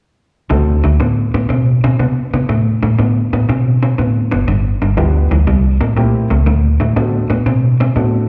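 Soulful and gritty, this short excerpt from a longer piece is an electric blues shuffle at 121 BPM in 4/4, with a swing feel on its eighth notes. An electric guitar through a small old amp carries the riff from 0.5 seconds onward, its tone slightly broken-up and lo-fi, compressed and up front, with a vibrato effect and slapback echo. Beneath it a vintage muted fingered electric bass holds the low end, dark and round with a foam-muted, amped thump that sits loudest in the mix. A woody, polished upright piano adds accompaniment with its own slapback echo, appearing briefly at the start and returning at 5.0 seconds. The harmony moves from D7 through G7 and C7 back to D7, and the whole performance comes across as a live gig heard through the venue's PA, wrapped in a light recital-hall reverb.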